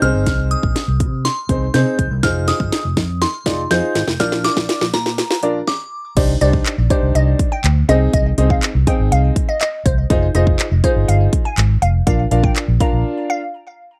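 A glassy FM synth bell with chorus, tremolo and tape echo carries the melody over clear baby grand piano, a dark, foam-muted fingered electric bass and a punchy house drum kit with cracking snare and metallic hats through a filtered build-up and drum fill. After a brief stop at 5.7 seconds, the drop lands at 6.2 seconds, and moments later a nasal, digital wavetable pluck takes the melody over pumping piano and bass in this confident, driving dance-pop excerpt at 122 BPM, recorded dry and close in a 1970s studio style.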